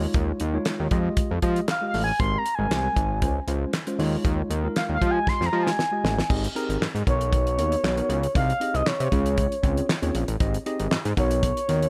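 An expressive synth lead carries the melody in this smooth, danceable early-eighties boogie funk excerpt, entering at 1.7 seconds with a dark, soft-edged sawtooth-and-triangle tone, vibrato and a chorus shimmer as it takes an analog solo. Underneath, a fat, detuned analog bass sits up front with a thick sawtooth body, quick attack and a filter sweep. A damped 70s acoustic kit keeps a straight 4/4 groove at 117 BPM, dry and close, with a tight kick, a fat snare, hi-hat, handclaps and crash cymbal. A drum fill from 5.3 seconds leads into the second section at 6.3 seconds. Further back, a worn, slightly out-of-tune tine electric piano adds mellow, clean chords in Ab major. The harmony moves through lush extended chords such as Eb9sus4, Fm9, Abmaj9 and Dbmaj7 before shifting to Abmaj7 and Bmaj9, all set in a studio reverb.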